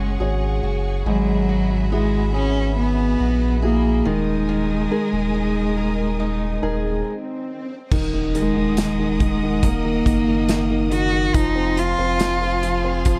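A straight 4/4 pulse at 70 BPM carries this emotional, longing pop ballad excerpt, where a rich, close bowed cello with smooth vibrato sings the melody up front over warm concert grand piano, a lush, clear studio string section holding sustained chords, a thick, saturated sine sub bass, and picked steel-string acoustic guitar arpeggios with finger squeak in the background that end at 7.6 s, while a very quiet electronic swell from 7.0 s and a brief stop give way at 7.9 s to an impact and a small-room country drum kit with a punchy kick, all in a dark, dry production.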